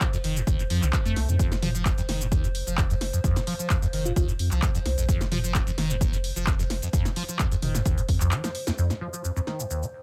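A dry, up-front acid house cut at 130 BPM with a raw, playful feel, where a squelchy, resonant sawtooth acid bass riff with phaser and filter sweep rides over a punchy tape-warm electronic kick, an analog drum machine of handclaps, hi-hat, shaker, snare and toms, and a deep, saturated triangle sub bass, with both basses and a nostalgic, detuned lo-fi pad pumping to the sidechain, while a sparkling bell-like FM electric piano note flickers at 4.1 seconds before a drum fill at 8.4 seconds and a band accent at 8.7 seconds.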